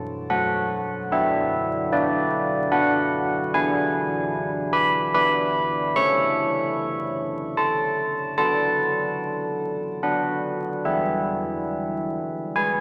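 Classical church-bell tune in a straight 3/4, festive yet serene, where a solo carillon rings out up front for the full 12.8 seconds with mellow bronze tones, a soft padded-clapper touch and a bell-like minor-third overtone, moving from F#m through Bm/D and E7/D to a close on E, bathed in a long, wet cathedral reverb beneath a layer of vinyl crackle in this short cut from a longer piece.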